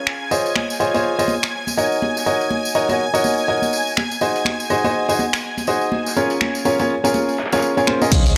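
A feel-good, joyful piano house excerpt at 123 BPM opens at 0.0 seconds with an intimate, woody upright piano riff up front, its action noise audible and its delay and sidechain pumping riding over a silky, detuned analog string pad of bright sustained chords moving through Dbmaj9, Ebm7, Ab7 and Bbm7. Swung sixteenths come from a dry analog drum machine with low-pass filtered crash, snaps, hi-hat and tambourine, backed by a very quiet, gritty sampler-style kit and ringing, saturated tambourine and congas played with hard hands. Only at 8.1 seconds do a punchy electronic kick and a round, dark FM bass on Db2 arrive, all set in a moderate plate reverb.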